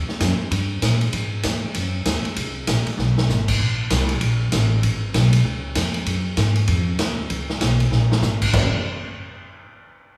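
Energetic and joyful, this short cut from a longer big band swing piece in F# major moves at a brisk 194 BPM in 4/4, pairing a woody, thumpy pizzicato upright bass with gut strings and an up-front, natural acoustic drum kit with a punchy kick, medium-tuned snare, hi-hat, ride, crash and toms, which plays fills at 3.0 and 7.9 seconds, all set in the wet reverb of a recital hall.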